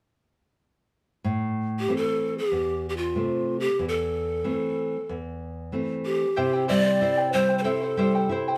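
Moving in free time, this short Andean folk excerpt carries a melancholic, wistful mood. A fingerpicked nylon-string guitar opens at 1.2 seconds with a classical, up-front tone, settling on an A minor chord as accompaniment. The large cane pan pipes take the melody from 1.8 seconds, breathy and mellow with a soft attack, audible chiff, vibrato and an unsteady quality that sits close to the listener. At 6.4 seconds the harmony moves to C and a charango joins, its fingerpicked double strings adding a bright, shimmering layer with some octave-doubled courses. The band plays live in one room, and a moderate stone-room reverb gives the performance a natural, resonant space before the fragment is cut off.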